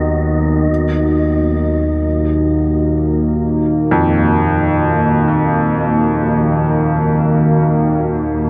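A nasal, evolving analog drone with chorus sits up front in this unsettling, desolate dark ambient excerpt in free time and Eb minor (tuned to A4 = 437 Hz), beneath a deep, moody, detuned pad holding sustained chords and a breathy, wind-like tuned noise texture heard briefly at the start and again at 8.3 seconds, while from 3.9 seconds a clear, intimate baby grand piano, its action noise audible, plays arpeggios through tape echo, all bathed in a huge, wet reverb.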